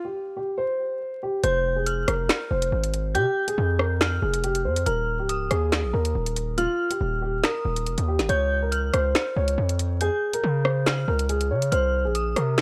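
A dark concert grand piano opens alone, playing the melody through a low-pass filter with a boxy, intimate tone, audible action noise and deep bass, all over a bed of vinyl crackle. At 1.4 seconds this ominous, cold drill cut from a longer piece drops in at 140 BPM in a half-time 4/4 feel, centred on F minor and tuned to A4 = 438 Hz. A distorted 808-style bass arrives up front, heavy and aggressive, a saturated sine with a noise layer and a fast, decaying attack. The electronic drill kit enters with it, overdriven and produced, pairing a woody snare and rim clicks with bright hi-hats and finger snaps. Above them a detuned FM synth bell adds an eerie, inharmonic second line high in the register, warbling and vintage through chorus and tape echo, with a long release. The chords move from Fsus2 through Eb and Db to Cm by 11.7 seconds, and the dry, close sound keeps the mood cold and ominous until the cut at 12.6 seconds.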